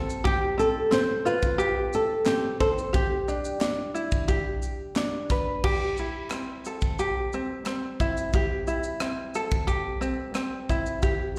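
Reflective and tender, this acoustic pop excerpt at 89 BPM in A minor sets a fingerpicked ukulele with slapback echo beside a polished studio drum kit of punchy kick, rim click, shaker, snare and crash, while a fingerpicked flamenco guitar carries the melody with audible finger squeak until 4.9 seconds, very quiet crisp group handclaps sit close and dry, and the whole is heard as a live gig through the venue's PA in recital-hall reverb over Fsus2, Em7 and Am7.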